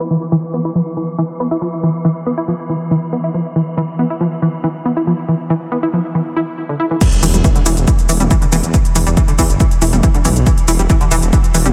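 A tight, nasal sequenced synth riff with chorus and a diffuse ambient delay opens this dark, driving peak-time techno excerpt together with a swarming, wave-folded drone in the background, while a filter sweep builds through the first 7.0 seconds. At the drop, a punchy analog kick lands up front alongside a techno kit of smooth, filtered hats, crash, shaker and toms, a very quiet electronic impact marks the moment, and a thick, menacing detuned saw bass enters at 7.2 seconds. The synth, drone, bass and most of the kit pump against the kick.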